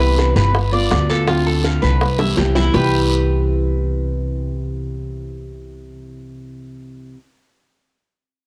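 Sunny and warm, this brief cut from a longer Cuban son and guajira piece sets a full-bodied, fingerpicked nylon-string guitar and a mellow, metallic Cuban tres playing arpeggios on double strings, both tinted by cassette tape, over a woody, growly pizzicato upright bass up front, while soft-handed, high-tuned bongos sit in the background beside a raspy guiro until a drum fill from 2.2 s and both drop out at 2.8 s, the homespun cassette recording bathed in moderate spring reverb.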